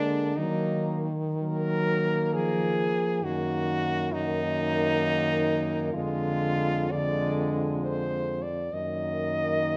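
A classical, lyrical piece for horn quartet in Eb minor, this brief excerpt from a longer work moves at a slow 65 BPM in 3/4, its uneven beats and rubato giving it a solemn, melancholic breathing quality. A clear French horn carries the melody up front, shaped with light vibrato and a soft attack, while a second horn sounds distant and roomy as it traces a narrow inner line. Beneath them, a dark horn with a smooth top fills out the accompaniment, and a mellow horn, also touched with light vibrato, anchors the bass. All four play together from 0.0 to 9.8 seconds, moving from Eb minor through Ebm/Gb and a Ddim/F before settling back on Ebm/Gb. A moderate recital hall reverb surrounds the ensemble, lending the quiet, sombre phrase a natural sense of space.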